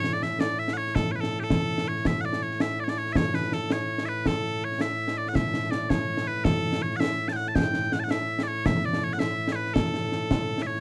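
Bagpipes and a pair of concert drums start together at once in this stirring, proud piece of Scottish traditional pipe music, cut from a longer performance. The loud pipes carry the melody as a continuous, piercing solo voice, bright and placed up front, reaching from A2 to A5. Beneath them the concert snare and concert bass drum keep a steady six-eight pulse, sounding acoustic and up front, with dark-toned cymbals and the feel of a small room. After an opening phrase of about 2.0 seconds, the music moves into a new section that runs to the end at 10.8 seconds. The sound is that of a dry, close studio recording in a 1970s style, touched with light reverb.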